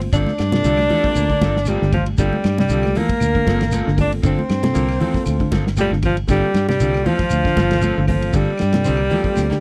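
Over a lightly swung 117 BPM groove in G dorian, this intense, funky afrobeat excerpt, recorded dry and close in a 1970s style, sets a warm soul drum kit with dark cymbals, a round fingered electric bass, grainy shekere, high-tuned congas and faint woody claves beneath an up-front, vibrato-laden alto saxophone with tape echo, a brilliant trombone second line, and a forceful baritone saxophone that enters at 0.6 s and returns at 4.7 s. Meanwhile a picked clean guitar with spring reverb plays arpeggios, a slightly broken-up electric guitar adds stabs, and a very quiet bell-like tine electric piano accompanies over a Gm11 chord, with a drum fill arriving at 9.4 s.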